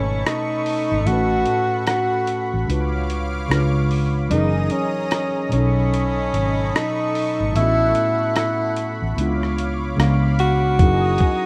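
Lo-fi hip hop at 74 BPM with a swung 16th feel, melancholic and reflective, cut from a longer piece: a breathy tenor saxophone carries the up-front jazz-style melody with subtone, vibrato and scooped notes under tape echo, over a worn, slightly out-of-tune tine electric piano with a cassette tinge and an airy, detuned unison pad treated with chorus. A dark, round, foam-muted electric bass anchors the low end, and a gritty, compressed sampler-style kit with a thumpy kick, hi-hat and rim click enters at 0.3 s. The progression cycles through B9, A69, C#7b9 and F#13 in a rough home-demo mix with light reverb and vinyl crackle.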